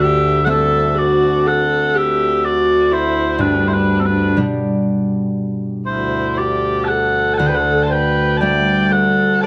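Celtic folk slow air in D mixolydian at a rubato 60 BPM, wistful and tender: mellow, sweet small bagpipes carry a continuous melody with vibrato up front; a single dark, distant viola adds an expressive bowed second line with vibrato and portamento; and a bright, ringing fingerpicked concert harp accompanies over D5, G and Dsus4 chords, heard through a moderate recital hall reverb with close, detailed microphones.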